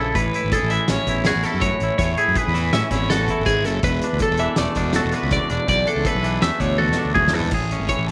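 A bright, compressed twelve-string electric guitar plays up-front arpeggios through phaser and slapback echo in this intricate, playful math rock and midwest emo excerpt at 163 BPM in 5/4 and A major, alongside a clean, twangy picked electric guitar accompaniment, a round, punchy fuzz-overdriven fingered bass, and a distant, roomy acoustic indie drum kit with dark cymbals and a fat snare entering at 0.2 s, all moving from Amaj9 to E9sus4 at 3.8 s before a drum fill at 6.8 s lands on Amaj7 in a light small-room reverb.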